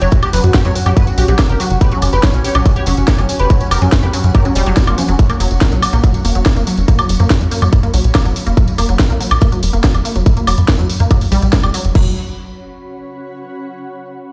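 Driving and alien, this psychedelic trance excerpt runs at 142 BPM in F# major, with a tight, up-front electronic kick and a punchy, saturated sawtooth sequencer bass anchoring the groove beneath a drum kit with a cracking snare, hi-hat, crash and woodblock, plus a jingly tambourine tucked in the background. A thick, detuned unison lead carries the melody through a phaser and dub echo until 5.1 seconds, while a lush, warbling pluck riff pumps against the kick and a cloudy granular pad blurs overhead, outlasting the other parts until 13.6 seconds. A barely audible downlifter opens the passage, and the whole mix is played on a big sound system in a bare room with large studio reverb.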